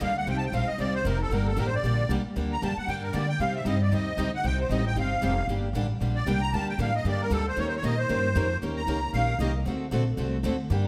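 Fiery and virtuosic, this excerpt of acoustic string swing puts a reedy, shimmering musette accordion up front with a melody solo that drops out at 9.5 s, over a progression from Cm and Gm to Eb7 and D7. Two bright picked steel-string acoustic guitars, one sitting in the background, carry the accompaniment with audible finger squeak. A woody, thumpy upright bass on gut strings plays pizzicato up front, and the whole performance sits in a moderate recital hall reverb.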